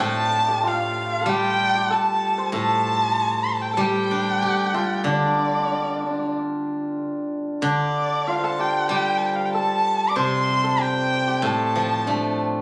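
Played rubato around 95 BPM in 4/4, this graceful, tender Chinese traditional chamber piece in D yu mode is a short cut from a longer work. Up front, a close, warm solo erhu carries the bowed melody with expressive vibrato and portamento, while a hammered dulcimer adds a shimmering second line and a silvery steel-string zither, played with fingerpicks and also up front, rings out a bright accompaniment. All three parts enter together at the start, with the erhu falling silent just before the dulcimer and zither close. The piece is set in a moderate recital hall reverb with audible room ambience and a compressed, phone-in-the-room sound.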